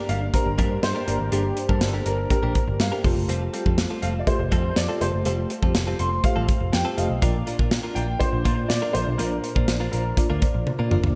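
A nostalgic, glossy 1980s-style pop excerpt in a steady straight four, moving from G minor through Fadd9 to Bb, with a warm baby grand piano carrying the melody over a mellow FM electric piano whose tremolo and phaser shimmer beneath it. A bright, twangy clean guitar riff with subtle chorus and delay weaves through the texture, while a dark, round, foam-muted picked bass anchors the low end beneath a punchy, polished acoustic drum kit with tambourine that sits up front. The whole dreamy mix is bathed in lush hall reverb, and a drum fill closes it from 10.7 seconds.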